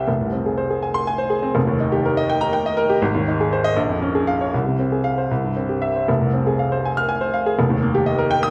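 Moving in 6/8 with uneven beats and free rubato, this passionate, agitated classical piano study for solo baby grand sits warm and up front in a wet recital hall, spanning from deep bass to bright upper register as its minor-key harmony churns through the brief 8.5-second cut from a longer piece.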